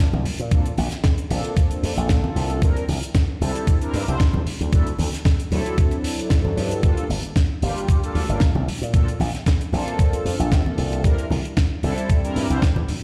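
Nu-disco with a groovy, sensual, lightly swung feel, cut from a longer piece, where a thumpy, tape-warm electronic kick sits up front beside a bright, punchy slap bass run through an envelope filter. A tight funk kit with a high-tuned snare and hi-hat, plus warm congas in the background, fill out the rhythm, while mellow synth brass, round, detuned and dark, with chorus, phaser, tape echo and sidechain pumping, sustains chords moving from Bbmaj9 through C7, D7 and Gm7. The mix carries the echo of a stone room, as if played on a big sound system in a bare space.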